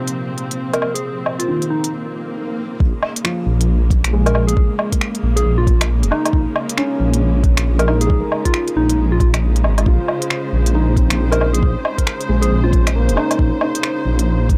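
Swung sixteenths in 4/4 drive this rainy, nocturnal future garage fragment, opening on a tape-warm electronic kit of finger snaps, crisp hi-hats and woodblock under a filter sweep, while a felt-muted upright piano with audible action noise and a lush, bowed string section both pump with the sidechain, the piano also trailing an analog delay. A round, keys-like FM synth lead with chorus and tape echo carries the melody from 0.7 s, and after a brief break and an electronic swell, a soft kick and a deep, rumbling detuned saw bass arrive up front at 2.8 s. The dry, gritty recording has little reverb.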